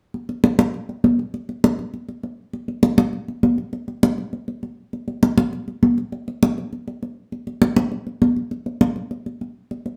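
A solo conga part opens this short jazz fragment, cut from a longer piece, and carries the whole ten seconds on its own in a straight 4/4 feel. The drums are high-tuned and bright, with thin, damped skins that give each stroke a tight, clipped character. Soft hands draw the sound from them, and the congas sit up front, close and dry in their own placement. Around them the studio lends a reverb tail, and the overall picture is heard from further back in the room. The mood is sophisticated yet driving, a brisk percussive pulse.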